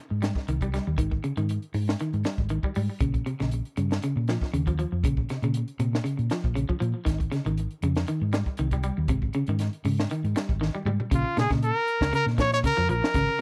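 Defiant and funky, this afrobeat excerpt moves at 118 BPM in 4/4 with a light sixteenth-note swing, centered in Bb dorian as the harmony shifts between Abmaj7(no3) and Bbm. A hollow-body short-scale electric bass, fingered and amped, sits up front with a dark, round tone, while a compact cocktail drum kit supplies a dry groove of hi-hat, punchy kick, high-tuned snare and toms. An electric guitar at the edge of break-up plays picked, twangy arpeggios, its slightly gritty tone dressed in lush chorus and slapback echo. After a drum fill at 10.6 seconds, a bright trumpet enters at 11.1 seconds for a punchy, pop-style solo with light vibrato. The sound is close and dry in the manner of a 1970s studio, with a touch of small room ambience.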